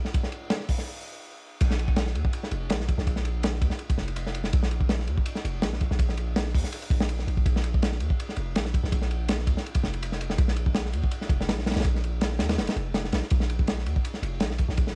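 A crunchy breakbeat kit opens this frenetic, dark drum and bass cut at 164 BPM, its punchy kick, medium-tuned snare, hi-hat, ride and dark crash cymbals sitting up front with a saturated, gritty character and a rolled-off top, building briefly before a stop at 0.9 seconds. At the drop at 1.6 seconds, a deep, long 808-style bass enters, a sine tone with a fast attack that decays under the lightly swung jungle breaks. The dry, cassette-recorded sound has the feel of a home recording, cut from a longer piece.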